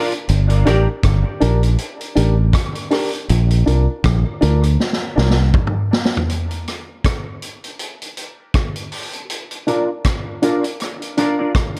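A round, dark fingered electric bass sits up front in this deep, hypnotic dub reggae excerpt at 80 BPM in G minor, swinging on the sixteenths over Gm and Bb before dropping out at 5.5 seconds. A vintage drum kit with a punchy kick and a rolled-off top carries hi-hat, kick, rim click, snare and toms, adding a fill leading into the second section, while a woody, mellow upright piano plays short stabs through dub echo. A clean, hollow-body electric guitar with analog chorus and dub echo returns at 6.7 seconds, and a filter sweep runs from 3.3 seconds to the close, all set in light studio reverb with a dark production.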